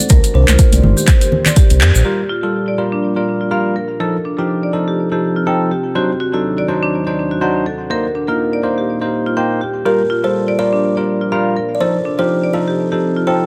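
A swung sixteenth-note groove in four drives this earthy afro house excerpt: an overdriven, up-front electronic kick and a gritty deep house kit with handclaps and metallic hats lead the opening, joined by bright, high-tuned congas played with soft hands and a grainy egg shaker tucked in the background. Beneath them a round analog bass, deep and detuned with a fast attack, pumps against the kick, while a moody, detuned analog pad holds sustained chords throughout with chorus, phaser and sidechain pumping. A dark, smooth marimba struck with hard mallets spins arpeggios across the whole clip, low-pass filtered and trailed by tape echo. After a band accent, the rhythm section drops away, and at 2.0 seconds a bell-like, clean tine electric piano takes over with pumping stabs, as a filter sweep moves through the pad. A woody, buzzing kalimba with a hollow-box ring flickers briefly at the start and returns at 9.9 seconds with a tape-echoed melody over the minor seventh and dominant chord cycle, all set in a light, small-room ambience.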